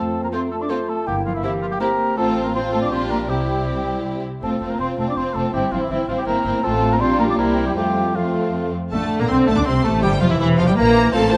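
Woodwinds and low strings open this short cut from a quick, cheerful classical-period movement for symphony orchestra, moving at 162 BPM in a lively 3/4 in F major. An airy, hollow concert flute rides high above a warm oboe with light vibrato and a bright clarinet set back in the mix, the three sharing secondary lines, while a mellow bassoon supplies accompaniment underneath. The bass comes from a dark cello section, with soft attacks and expressive portamento, and a close double bass section reaching down to E1. At 0.3 s the violin sections join, one carrying the focused, vibrato-rich melody and the other weaving a background counterline, as a smooth viola section fills in the middle. The harmony circles between F and C7 with passing Gm7/Bb chords, then shifts to Bbmaj9/A at 8.9 s, where a distant, roomy French horn section enters very quietly with sustained chords. Light reverb gives the ensemble a gentle sense of space.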